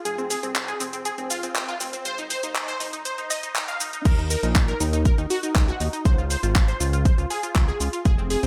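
Progressive house at 120 BPM, expansive and bittersweet, in which a bright, detuned unison sawtooth pluck plays arpeggios through phaser, delay and sidechain pumping over a fat, tube-saturated analog bass and a tape-toned house kit of crash, handclaps, hi-hat and shaker, all under light reverb, as a filter sweep on the pluck builds until the drop at 4.1 seconds brings in a punchy, up-front electronic kick.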